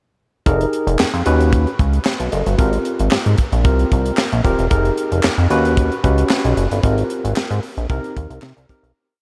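Funky and slick, this short early-eighties boogie funk piece in F minor moves at 113 BPM in a straight 4/4, built on a single verse that cycles through Fm11, Eb7alt and Abmaj13 before closing on Cm7 as it fades out from 6.8 seconds. A tight funk kit sits up front with a dry, high-tuned snare layered with handclaps, a tight kick and hi-hat driving a mid-tempo boogie beat, while a glossy, nasal chorused synth bass with a plucky filter and moving notch plays a fat syncopated line full of muted ghost notes and chromatic approach notes. A worn, slightly out-of-tune tine electric piano heard through its built-in speakers adds rootless syncopated chord stabs and short fills, all set in a dreamy mix soaked in a huge ambient reverb.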